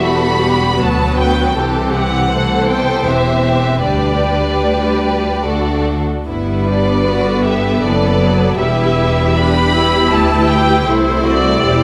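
A tender, lyrical string-orchestra passage, cut from a slow romantic movement in G major at 77 BPM in a rubato 3/4, opens with the full ensemble at once: a distant, smooth first violin section sings the melody above an expressive second violin line placed close and up front, while a distant, even viola section supplies the accompaniment and an intense cello section and a clear double bass section, both bowed with vibrato, anchor the bass together, as the harmony moves from E minor through C major seventh and D to G within a moderate scoring-stage reverb.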